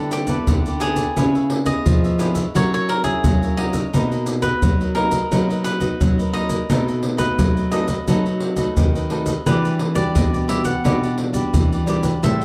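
Samba and choro with a joyful, sunny mood, in which a crisp picked cavaquinho carries the melody over a second cavaquinho picking out the accompaniment, while a fingerpicked nylon-string guitar fills in accompaniment in the background. Another nylon-string guitar plays a full-bodied, deep bass line with audible finger squeak, and maracas, pandeiro and a tight surdo sit up front despite their distant, large-room character. The dark, warm production adds moderate studio reverb as the harmony moves from G69 through C#m7, F#7 and Bmaj7 to B7 and Em9.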